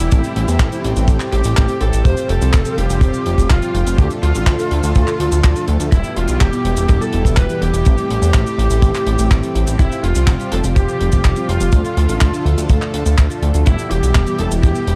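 A dark, warm production with little reverb frames this nostalgic, danceable italo disco cut from a longer piece, moving at 124 BPM in a straight 4/4 in A minor. The chorused synth bass sits up front, glossy and nasal with a fast filter pluck, carrying the low end alongside a tight, polished kick that enters at 0.1 seconds and drops out at 14.7 seconds. A tight funk kit adds cabasa, handclaps and hi-hat with an airy studio ambience, while a lush, warbling unison pad holds sustained chords in the background, thick and bright with a slow attack and long release. Mellow synth brass stabs, round and detuned with chorus and phaser, sit further back beneath an overdriven, lo-fi electric lead guitar that carries the melody through a small cranked amp with digital delay. The harmony cycles twice through Am7, Fsus2, Dm and Em across the 15 seconds.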